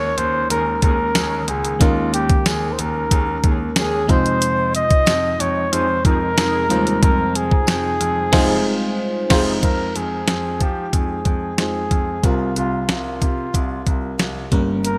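Moody and nostalgic, this 1980s-style pop excerpt in F minor moves at 92 BPM as a breathy flugelhorn carries the melody up front with vibrato and delay over glassy, bell-like FM electric piano chords with chorus, a clear concert grand piano holding a deep bass line, a thumpy, fat-snared 12-bit drum machine, dark, detuned synth brass stabs with chorus and phaser in the background from 0.5 to 9.5 seconds, and a faint jingly tambourine, with a band accent at 8.3 seconds in a bright digital production with light reverb.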